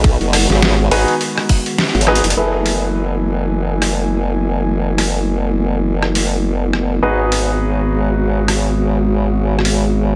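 A funky, swaggering glitch hop excerpt opens on a drop. A tight, tape-warm electronic kick sits up front beneath gritty, pitched-down sampler-style drums of hi-hat, rim click and overdriven snare, alongside a saturated, wobbling formant-sweep bass and a smooth, detuned sawtooth pad with chorus and sidechain pumping. A bright baby grand piano enters with stabs at 0.9 seconds, carrying 12-bit sampler grit, tape echo and pumping, and the kick stops at 1.6 seconds. From 2.4 seconds a filter sweep moves through the piano stabs, all in a light reverb.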